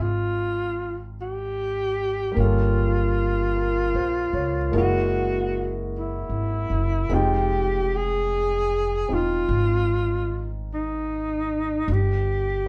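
Swung eighths in a slow 4/4 give this melancholic, smoky jazz ballad an unhurried sway, as a breathy alto saxophone carries the melody with subtone, vibrato and scooped notes, sitting up front with a whispered, intimate tone. A warm concert grand piano accompanies through a rootless Dbmaj9#11, Gm7b5, Gb9 and Fm9, its action noise audible and its low register deep, before it falls away at 11.9 s. A woody, thumpy pizzicato upright bass anchors the band, which plays together in one room under moderate studio reverb in this short passage from a longer piece.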